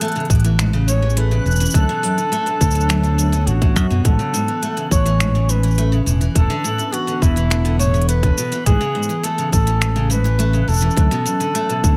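A distant, mellow flugelhorn with vibrato and a soft attack carries a jazz-style melody over a warbling, nostalgic pad of detuned, chorused chords, bright arpeggios on a picked steel-string acoustic guitar, finger snaps, crisp hi-hat and shaker from a tape-colored electronic kit, and a faint reversed, granular texture in the background. From 0.3 seconds, a growly, up-front fingered electric bass and a tight electronic kick join in. This hopeful, pastoral folktronica excerpt moves at 104 BPM in A major over an Amaj7, D6 and E7sus4 progression, with a light reverb around the mix.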